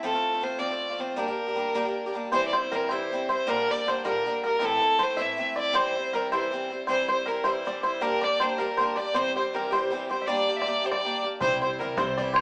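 The recording has a small-speaker sound, with the band playing live in one stone room whose damp reverb hangs for about a second. This spirited, dark and lively Celtic folk jig, cut from a longer piece, moves at 106 beats per minute in 6/8 with a straight feel. A rich, smooth fiddle with light vibrato carries the melody up front, while a bright, woody, boxy acoustic guitar with old strings picks a swing-style accompaniment just as close. At 2.3 seconds a twangy, percussive bluegrass banjo played with fingerpicks adds a second line in the same register as the fiddle. The harmony circles through F, Gm, C and Am, and at 11.4 seconds a woody pizzicato upright bass joins for the final second, along with an open, boomy, vintage-sounding bodhran in the background.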